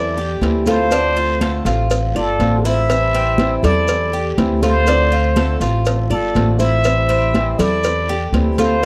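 Cuban son with a guajira lilt, this warm, danceable fragment from a longer piece is led up front by a clear, jazz-style plunger-muted trumpet with wah-wah tone and light vibrato, over a thumpy, woody pizzicato upright bass and a bright, metallic tres picking arpeggios on its doubled strings. A fingerpicked classical nylon-string guitar with audible finger squeak plays a second line in the background, while a dark, boxy swing-style acoustic guitar handles accompaniment over an Am7 and Dm7 vamp. The percussion sits back in a close, dry small-room sound that recalls a 1970s studio: thick-skinned, high-tuned congas, a tight cowbell and very quiet woody claves, with grainy maracas and a raspy guiro sounding more distant.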